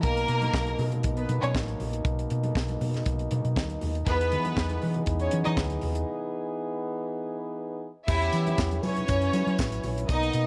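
Disco at 119 BPM in B major, danceable and glamorous, with a lush, bowed string section carrying a smooth second line over warm, distant French horns holding sustained chords, while a round, punchy hollow-body electric bass and a tight, polished funk kit with a high-tuned snare drive the groove. Very quiet ringing congas sit far back in a large room, and a jingly tambourine joins in the background at 8.1 seconds as the harmony moves from Bmaj7 and Emaj7 to Em6 and F#7sus4, following a break from 6.1 to 8.1 seconds. Light studio reverb rounds out this short cut from a longer piece.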